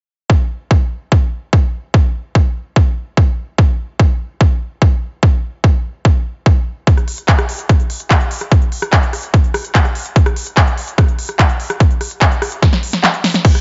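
A straight 4/4 trance pulse at 146 BPM drives this alien, intense fragment, built on a punchy, overdriven electronic kick drum that sits up front from 0.3 seconds in a studio reverb. At 6.9 seconds a layered big-room dance kit joins with crash cymbal, handclaps, crisp hi-hats, rim clicks and a punchy, overdriven snare, all bathed in a digital ambience with muted highs. A drum fill arrives at 12.6 seconds, and the kick drops out at 13.0 seconds.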